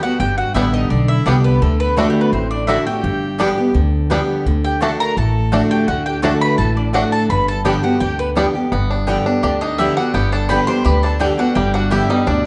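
A straight 4/4 pulse carries this rustic, virtuosic bluegrass excerpt, built on a woody pizzicato upright bass and a bright, full-bodied picked acoustic guitar with audible finger squeak, both up front. A mellow, double-strung mandolin takes the lead melody while a second mandolin adds picked stabs in the background, a twangy, percussive banjo rolls out fingerpicked arpeggios, and a rich, earthy bowed fiddle plays a distant second line. The main theme restarts at 8.7 s, and the whole band sits in a dark, warm production with a moderate large-studio reverb.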